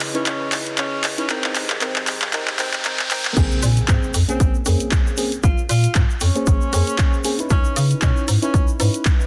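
A moody deep house cut at 116 BPM in Bb minor opens with a dark, detuned analog pad pumping under the house drum kit's handclaps, hi-hat and crash, while a breathy, distant tenor saxophone plays a whispered jazz-style solo over soft, round FM electric piano stabs coloured by chorus and phaser, and an electronic riser builds in the background through a drum fill. At the drop at 3.4 seconds the pad falls away and a punchy, up-front kick, a hollow, bouncy FM bass and a grainy egg shaker arrive with an impact, the chords moving from Bbm9 to Dbm9. The dense, heavily limited mix carries a light reverb, with digital delay on the intimate, roomy sax.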